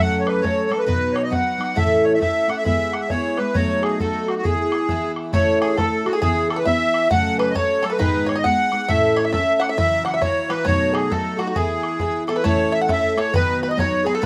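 Close, detailed microphones in a moderate studio room give this bright, rollicking Celtic polka at 135 BPM a lively, swung bounce, with a reedy, sweet accordion up front carrying the melody over the shimmering, octave-doubled picking of a twelve-string acoustic guitar. A very quiet, pure wooden baroque flute with vibrato adds a second line, and a boomy, vintage-toned bodhran enters at 0.3 seconds. A twangy bluegrass banjo joins in the background with its own second line at 5.3 seconds, and this cut from a longer piece reaches a new section at 12.4 seconds.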